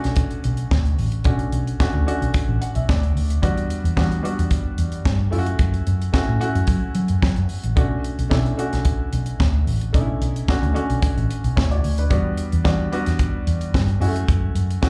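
A straight 4/4 disco groove at 110 BPM in B minor is driven by a tight funk drum kit, with a dry, high-tuned snare, a tight kick and hi-hat sitting up front beside a dark, round, foam-muted electric bass that sounds amped and vintage. A worn, intimate baby grand piano comps quietly underneath, with audible action noise, short sustain and a slapback echo, and it steps forward with a brief fill at 2.3 seconds over chords moving through Bm7, Em7 and F#m7. Danceable and glamorous, this cut from a longer piece sounds like a live gig heard through a venue's PA, with a touch of club reverb.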